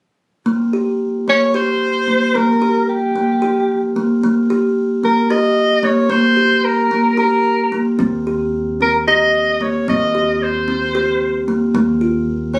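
Pulsing in 7/8 at 224 BPM counted in eighths, this restless, shimmering contemporary chamber excerpt in Eb mixolydian opens at 0.5 seconds with an up-front, woody kalimba ringing out thumb-plucked arpeggios, joined at 1.3 seconds by a mellow soprano saxophone carrying a punchy, roomy, jazz-style solo melody with vibrato, while a thumpy pizzicato upright bass with steel strings enters quietly on a low Eb at 8.0 seconds as the harmony shifts to Cm/Eb, the whole captured on a phone in a room with light reverb.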